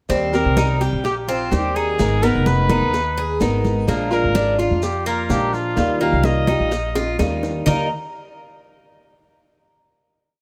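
Light reverb gives this short, complete Cuban son and guajira piece a relaxed, sunny glow at 127 BPM in 4/4, set in Eb major with a straight feel. An old ladder-braced acoustic guitar, boxy and dark with old strings, strums the accompaniment with muted slaps. A bright Cuban tres picks an arpeggiated guajeo on metallic double strings, some of them doubled at the octave. Up front, a woody, thumpy upright bass on gut strings plays a syncopated pizzicato figure, while a punchy trumpet with vibrato carries a solo melody of hook phrases from 0.3 to 7.2 seconds. Congas with slaps and open strokes sit in the background under soft hands, very quiet high-tuned bongos keep steady eighths with a hand bell, and grainy maracas sound from a large room. The harmony moves through Eb6, Abmadd9, Bb7 and Ebadd9, a drum fill arrives at 7.0 seconds, and the piece closes on a final chord from 7.7 seconds.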